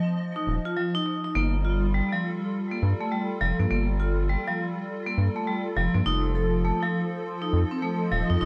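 A hollow, flute-like pad with ensemble chorus opens this glitchy, melancholic IDM excerpt at 102 BPM with swung 16ths, joined at 0.4 s by metallic, ringing vibraphone arpeggios struck with medium hard mallets and carried by tape echo, and then by a round, deep analog bass, as the sustained harmony shifts to G7sus2 at 1.4 s and settles on F7 at 6.1 s in a lightly reverberant studio space.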